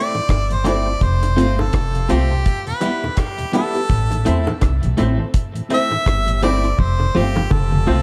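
A clear, punchy harmonica with vibrato and tape echo carries a serious, hypnotic roots reggae solo over a clean, picked electric guitar, a soft flute-like tonewheel organ and a muted, phaser-tinged dub chord stab in the background, as high-tuned bongos join at 0.1 seconds and a woody, up-front upright bass and a dry, dark reggae drum kit with a tight kick enter at 0.3 seconds, the kit rolling into a fill at 6.8 seconds in this cut from a longer piece.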